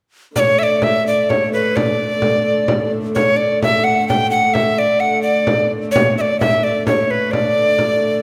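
Rustic and festive, this excerpt from a longer piece is a medieval dance in D major, moving at 86 BPM in a straight 6/8 felt in dotted quarters. An alto recorder carries the melody between B4 and G5, its breathy, woody tone close-miked and up front, with a soft attack, a touch of chiff and an unsteady vibrato. Beneath it a single hurdy-gurdy holds a dark, nasal drone between D3 and A3, the wheel-bowed strings giving off an airy bow sound. A small, bright frame drum played with soft hands adds percussion that sounds as if captured in a small room. All three parts enter together at 0.4 s; the drum drops out at 8.0 s while the recorder and drone carry on to 8.2 s, set in a wet recital hall reverb with a 1.6 s decay.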